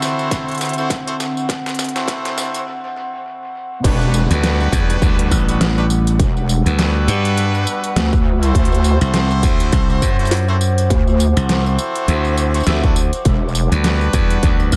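Set in an echo-heavy mix with light reverb, this swaggering, playful glitch hop excerpt in E minor rides a swung 102 BPM groove, opening with a build-up where a drum fill, filtered brilliant horn stabs with analog delay and a moody analog pad pumping against the sidechain lead into a short break. At 3.8 seconds the drop lands: a punchy, tape-warm electronic kick anchors a dubstep kit of deep snare, crisp hats, rim clicks, tambourine and crash, while a heavy, saturated wobble bass and a growly, glassy slap bass entering at 4.3 seconds sit up front. A very quiet downlifter passes beneath as the harmony shifts between D7 and Em9, with the tight, vibrato-laced horns stabbing over the dark, detuned pad.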